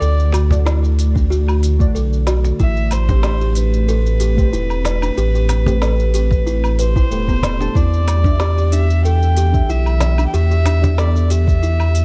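Meditative and hypnotic, this organic downtempo cut from a longer piece moves at 93 BPM in 4/4 with a light sixteenth-note swing, drifting from D to Am7 and then Em7. A dark, intimate kamancheh carries the melody with light vibrato and an airy bow, its phrases trailed by digital delay, while a buzzing, woody kalimba plays short, band-limited arpeggios through its own delay. Beneath them, a round sine sub bass sits up front with tube saturation, and an ethereal, airy pad holds sustained chords in the background, detuned and spread by ensemble chorus and built-in reverb with sidechain pumping. A deep, mellow chord stab joins at 0.5 seconds, decaying under chorus, phaser, delay and pumping. The rhythm comes from an organic electronic kit with a woody snare, crisp hats, shaker and woodblock, a close cajon struck with hard hands from 0.3 seconds, and a soft electronic kick entering at 1.2 seconds, all set in a dark digital ambience.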